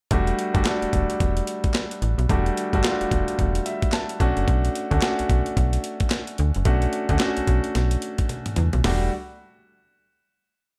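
Confident and bouncy, this short new jack swing piece in the R&B vein rides a hard-swung drum-machine beat from a gritty, compressed breakbeat sampler-style kit, with a thumpy kick, a medium-tuned snare layered with handclaps, hi-hat and toms sitting up front. Underneath, a slap-like FM bass plays a swung synth-funk line with a snappy, metallic attack that decays into a mellow tail, dotted with muted ghost notes. A concert grand piano carries the accompaniment with a pushed chord rhythm in rootless voicings, grace notes and short fills; its tone is intimate and polished, with deep bass and audible action noise. The harmony moves from Em11 to Bm9, with a piano fill around 3.4 seconds and a drum fill at 8.3 seconds leading into a final Em11 chord at 8.8 seconds. A digital ambience wraps the whole piece in a sense of space.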